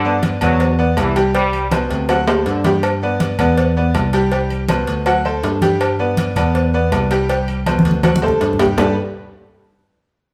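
A straight 4/4 salsa groove at 161 BPM rides on close, dry congas, compressed hard-hand cowbell and bongos, and ringing metal-shell timbales with agogo bells, with drum fills rolling into each new phrase in this sunny, joyful fragment of a longer piece in G major. A bright, woody upright piano with audible action noise and a slightly detuned, worn character carries the accompaniment up front, while a clean tine electric piano with a phaser plays the bass line. A clear, vintage trombone section adds a second line until 2.7 s, and the band shares a large studio room over a repeating G, Em7, C5, D7 cycle that lands on Gadd9.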